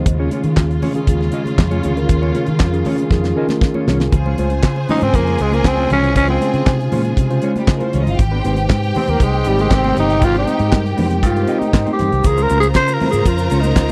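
A growling, breathy tenor saxophone takes an up-front jazz-style solo from 4.9 seconds with scooped notes and raspy grit over a glamorous, danceable 118 BPM disco groove of damped 70s drums with a fat snare and handclaps, a round fingered bass, a mellow tine electric piano, a dark background electric guitar with spring reverb, soft high-tuned congas, dark symphonic strings, a clear lush studio string line entering at 4.1 seconds and a grainy tube shaker from 12.2 seconds, all captured in a dry, close 1970s-style studio sound on chords moving from Eb9sus4 through Dbmaj7 and Abmaj7.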